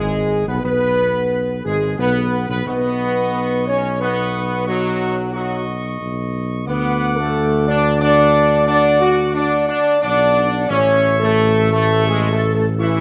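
A clear trumpet section carries the melody in this solemn, majestic classical brass passage in E major, taken from a longer piece and moving at 89 BPM in 3/4. Beneath it, a distant, soft-edged French horn section and a present trombone section with light vibrato hold sustained chords over a dark, punchy tuba bass, while the harmony moves from E through Badd9 and D to A. Very quiet timpani on calf heads sound a B2 from 2.7 to 3.6 s, and a moderate scoring-stage reverb with a 1.5-second decay surrounds the brass.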